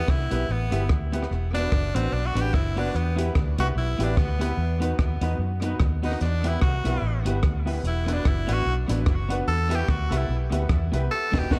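A raspy tenor saxophone opens this mischievous, energetic ska cut, taking a solo with light vibrato and a gritty, forceful edge, colored by tape echo. A woody upright piano sounds stabs from the start, also carrying tape echo, while a round, foam-muted vintage electric bass and a compact cocktail drum kit join almost at once. The kit has a high-tuned snare, a punchy kick, rim clicks, hi-hat and crash, with a rolled-off top. From 0.3 seconds an electric guitar at the edge of break-up plays picked accompaniment in the background through spring reverb, as the harmony moves between E minor, B minor over E and B major. The production is dark and lightly reverberant, the bass sits up front, and the band hits an accent at 11.1 seconds just before this cut from a longer piece ends.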